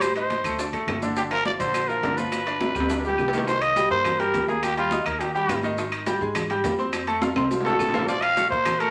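A driving, passionate salsa excerpt opens with a raspy, growling trumpet melody up front, a brilliant grand piano with audible action noise, a dark, thumpy pizzicato upright bass, round, saturated bongos and, in the background, high-tuned congas, ringing timbales, woody claves and grainy maracas, all in a wet studio reverb, with a drum fill at 2.6 seconds and the trumpet dropping out at 5.6 seconds before returning at 7.6.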